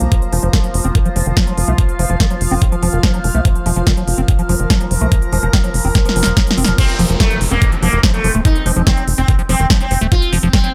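Set in a digital ambience, this hypnotic psychedelic trance excerpt pairs an up-front knocking kick and an overdriven kit of punchy snare and crisp hats with a dark, driving sequencer bass, a squelchy, resonant acid bass riff under a filter sweep with phaser, sampler grit and delay, a chorused, phased drone of moving overtones, and a cloudy granular pad in the background, until a drum fill leads into the drop at 6.8 s, where a buzzing, shimmering sitar melody with phaser and delay enters over a background downlifter.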